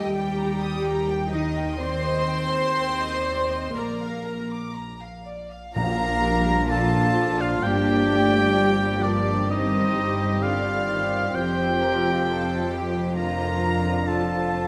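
This cinematic, emotional film-score passage opens with the full string body playing freely in a rubato 4/4: two violin sections, one carrying a soft, floating melody set back in the mix and the other a pure second line, bowed sul tasto over a dark, intimate viola accompaniment with light vibrato. Beneath them, a distant cello section and a close, shadowy double bass section share the bass, both with soft attacks that give the low end a gentle, airy weight. At 5.8 seconds the woodwinds join with their own second lines, led by an up-front oboe with a clear, lightly vibrant classical tone, alongside a soft-edged clarinet and a mellow, hollow concert flute with vibrato and lifted highs tucked into the background. A dark, very quiet French horn section adds distant, roomy sustained chords from 5.7 seconds, while timpani struck with soft mallets give a round touch that ends at 7.1 seconds. Harmonies such as Gm7, Cmadd9/G and Fsus2 move the music toward a resolving Bb/F, and moderate scoring-stage reverb lends an uplifting, moving glow. 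Lossy compression artefacts are audible, and the passage is cut from a longer piece.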